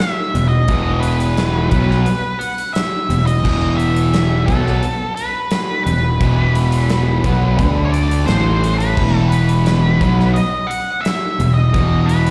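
A straight 4/4 pulse at 87 BPM drives this dark, cathartic cut of quiet-loud alternative rock, taken from a longer piece and sounding like a live gig heard through the venue's PA with a recital-hall reverb. A huge arena drum kit plays throughout, with a punchy kick, a medium-tuned snare, bright crash and hi-hat cymbals. A growly, overdriven fuzz bass sits up front, while a compressed fuzz guitar and a bright, thick fuzz guitar carry the riff between E2 and D4, the second one tucked in the background with a slapback echo. Over them, a dark octave-fuzz lead guitar plays the melody between A4 and F#5, colored by distortion, slapback and tape echo. The harmony rests on E5 for most of the passage, then moves through D5 at 7.6 seconds and A5 before returning to E5 at 9.0 seconds.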